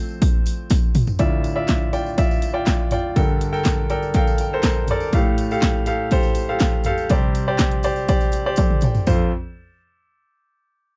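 A straight 4/4 pulse at 122 BPM drives this anthemic, hopeful piano-driven pop excerpt in F major, where a clear, polished baby grand opens with a solo passage while a punchy analog drum machine of kick, snare, hi-hat, handclaps and toms enters at 0.2 seconds, placed up front with a short room on the snare, clap and hats, and plays a fill from 0.7 seconds. The piano carries the chords from Dmadd9 through Gmadd9, Fadd9/A and Csus2, adding a fill between 3.7 and 5.1 seconds, while a jingly tambourine sits in the background in its own live room. The dry, close recording has a 1970s studio character, and a second drum fill at 8.6 seconds leads back to F as the parts stop around 9.3 seconds.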